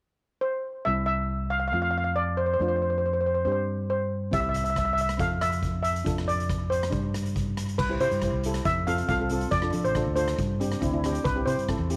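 A shimmering steel pan played with hard rubber sticks carries the melody up front from 0.4 s in this sunny, festive calypso excerpt. At 0.9 s a second steel pan on medium rubber sticks joins in accompaniment, alongside a round, punchy fingered electric bass. A street-band drum kit with a boomy kick, dark cymbals, hi-hat and rim click arrives at 4.3 s. The piece moves in a straight four-four feel over a recurring C, F, Dm and Gsus4 progression, set in light reverb and small room ambience.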